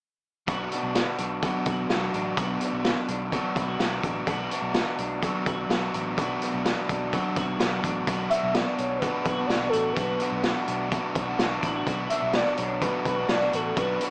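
A gritty, boomy garage drum kit, a crunchy overdriven guitar up front, a bright, twangy twelve-string electric guitar playing arpeggios in the background through lush chorus and tape echo, and a dark, round, foam-muted bass open this restless, bittersweet jangly indie pop excerpt in B minor at 126 BPM, with a velvety, detuned sawtooth synth lead gliding in on the melody at 8.3 s, all heard through a small-speaker sound with moderate studio reverb.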